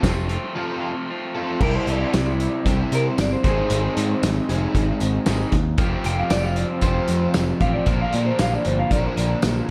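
A dark, warm studio sound with light reverb frames this moody, cool indie rock excerpt, moving at 115 BPM in a straight 4/4. A loose acoustic drum kit sits up front in a pumping room, with a punchy kick, a medium-tuned snare, hi-hat, crash, tambourine and dark cymbals under a rolled-off top. A round, direct bass, picked and overdriven, anchors the low end. Two crunchy overdriven guitars carry the riff: one bright and set in the background, the other given an ensemble chorus. Up top, a slightly broken-up, lo-fi lead guitar through a small old amp, treated with analog delay, plays the melody; a break arrives at 0.6 s and a guitar solo takes over at 1.6 s. The harmony moves from F through Cadd9, Ab and Fsus2 to Bb.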